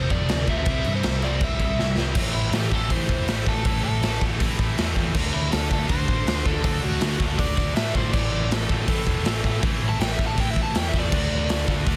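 Punk rock at 161 BPM in A dorian, this raw, aggressive excerpt from a longer piece charges ahead with a straight 4/4 drive. A raw garage drum kit sits up front, its punchy kick, medium-tuned snare, hi-hat and crash saturated and gritty in a bright stone room that pumps. After a drum fill from 1.8 to 2.2 seconds, the overdriven electric guitar takes a solo through to the end, its compressed, picked lead carrying delay. Behind it, a double-tracked distorted electric guitar and a heavy high-gain guitar grind out riffs in the background, while an overdriven picked bass growls underneath with an amped, punchy edge. The chords move from F and C into a cycle of Am and D, and the mix is dense and heavily limited with little reverb.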